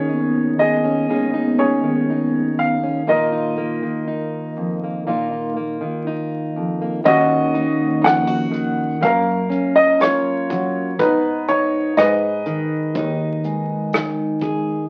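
A clear baby grand piano carries the melody up front in this heartbroken, melancholic acoustic folk-pop ballad, moving slowly at 61 BPM in a straight 4/4. Beneath it, a full-bodied fingerpicked steel-string acoustic guitar, plugged in and also up front, supplies the accompaniment. A mellow vibraphone played with soft mallets adds ringing arpeggios shaded by a slow motor vibrato. At 7.1 seconds a growly, woody fretless electric bass enters in the background, along with a brushed drum kit whose punchy kick, hi-hat and rim click give the second section its pulse. The harmony drifts from Absus4/Eb and Bbsus4 into Ebm7, Gbmaj7 and Abm. A moderate studio reverb surrounds the parts, and the recording carries the vinyl crackle of a very old 78 rpm record in this passage cut from a longer piece.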